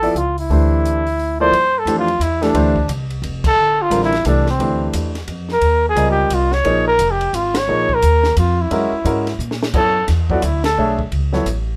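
Modal jazz in a swinging 3/4, spiritual and cool, led by a dark, breathy trumpet solo with scooped notes over a warm, short-sustained baby grand piano, a woody pizzicato upright bass with steel strings, and a compact cocktail kit with a punchy kick and high-tuned snare, the band hitting accents at 3.4, 7.5 and 10.6 seconds, with a drum fill leading into the final section, all set in a moderate club reverb in this brief excerpt from a longer piece.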